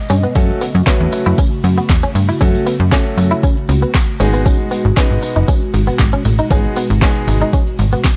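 An airy, breathy pad opens this summery, carefree dance-pop fragment, its detuned, mellow chords sitting in the background with a chorus sheen and a gentle sidechain pump. A moment later the full groove arrives in a straight four-beat feel: a smooth R&B drum kit with a soft kick, sharp snare, handclaps, hi-hat and shaker, overdriven and placed up front, alongside a faint, jingly vintage tambourine. A punchy, funky analog bass drives underneath with fast-attack, decaying sawtooth plucks, pumping with the sidechain. A bright, twangy clean electric guitar, recorded direct and compressed, plays a picked riff through an ensemble chorus, while a clear concert grand piano enters at 0.4 seconds with polished, short-sustain accompaniment, also ducking with the sidechain. The harmony moves from F#m to G#m7, and the dry, gritty mix has its highs rolled off, giving the whole a compact, hardware-tinged character.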